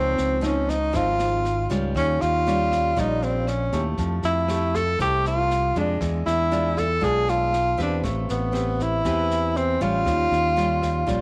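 Set in a small room with light reverb, this romantic, sunny bossa nova fragment at 118 BPM in straight 4/4 features a mellow, smooth-topped tenor saxophone soloing up front with vibrato and subtone, over a fingerpicked classical nylon-string guitar, a bright, direct fingered electric bass up front, and a brushed jazz kit with high-tuned snare, rim click and boomy kick that enters at 0.2 s in the background, as the chords move from Dbmaj9 through Eb9, Fmaj9, E7b9 and Am9 before returning to Eb9.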